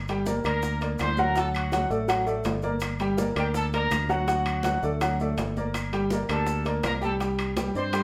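Salsa at 164 BPM in G harmonic minor, passionate and driving, with a punchy fingered electric bass and a clear, worn grand piano up front, ringing high-tuned congas, round low-tuned bongos, saturated metal-shell timbales, woody claves and grainy maracas in the background, and a bright, tight trumpet section with vintage vibrato taking the melody from 0.5 seconds, all in a live room with a wet studio reverb over chords moving from Gm through Gmadd9 to Csus2.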